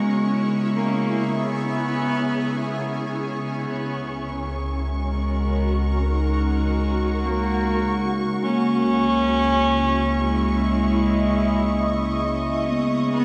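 A vast, echoing space with a wet cathedral reverb and a 6.0-second decay surrounds this serene, spacious ambient excerpt, which moves at 51 BPM in 4/4 in C# dorian, tuned to A4 = 438 Hz. A single bowed cello with a reedy gut-string tone carries the melody up front between G#3 and C#4, its line bathed in shimmer reverb and delay. A vibraphone with soft mallets plays mellow, dry, close-miked arpeggios through delay, while an ethereal pad holds sustained chords colored by chorus, phaser and octave-up shimmer. Beneath them a nasal analog drone evolves in the background and fades in from 3.7 s, and a chamber violin section adds a high, smooth C#6 texture with vibrato. At 3.7 s a round, deep analog bass enters on C#2, grounding the harmony as it moves from F#7sus4/C# to G#5/C# and settles on C#m at 8.4 s.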